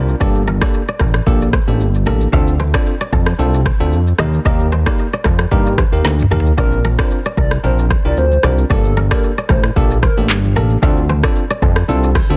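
A fat, detuned sawtooth bass with a filter sweep sits up front in this mellow, smooth afrobeats excerpt in G minor at 113 BPM. It shares the foreground with an overdriven electronic drum kit of deep kick, woody snare with soft clipping, metallic hats, handclaps, rim click, shaker and toms, while very quiet, close congas add a hard-handed, thin-skinned touch. A bell-like tine electric piano carries the chords and a crisp, ringing fingerpicked kora plays a riff through delay. A drum fill leads into the second section at 6.6 seconds, where a hollow, clarinet-like synth lead with chorus, vibrato and delay carries a soft melody until 10.2 seconds, all within a dense, heavily limited, dry mix moving through Gmadd9, Dm7, Eb and Bbadd9.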